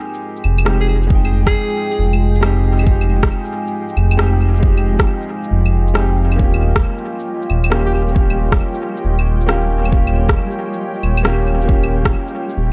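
A dark, detuned saw bass rumbles up front through this ghostly, melancholic future garage excerpt at 136 BPM in F minor, with a swung 16th-note feel and sidechain pumping, joined by a deep electronic kick from 1.1 s, layered shaker, claves and rim click through analog delay, a woody vintage upright piano with tape echo, a moody chorused pad, brief subtoned alto saxophone phrases with vibrato and scooped notes, and a flickering granular texture arriving at 6.9 s, all moving from Fm9 to Eb9 in an echo-heavy mix.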